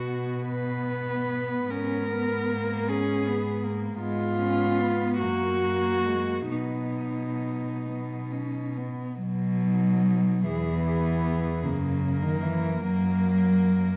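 Tender and lyrical, this classical passage for cello ensemble, cut from a longer piece, moves in a rubato 6/8 as a warm cello carries the melody up front, its airy bow, light vibrato and sul tasto touch sounding intimate and close. Beneath it, a dark cello with a smooth top plays the accompaniment while another cello holds the bass line, and a woody, shadowed cello adds a second line from 0.5 s. The recital hall reverb is moderate, and the production leans dark and warm as the harmony settles on B, then moves to E and F#.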